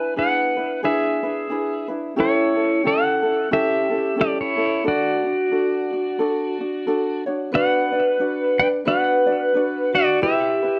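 The recording has a dark, warm studio sound, with a wet reverb that gives the instruments a soft halo. This sunny, dreamy Hawaiian piece moves at 90 BPM in 4/4, with a gentle swing on the eighth notes and tuning set to A4 = 442 Hz. Up front, an electric pedal steel guitar carries the melody with a bright, clean, twangy tone; it is played with fingerpicks and slide, compressed, and shaped by volume swells. Close beside it, a light, thumb-plucked acoustic ukulele provides the accompaniment as the harmony moves from E7 through A7 and D to Bm and Em. At 7.5 seconds a vibraphone played with soft mallets and its motor off enters in the background, adding a mellow, metallic, ringing second line that continues until the excerpt ends at 10.8 seconds.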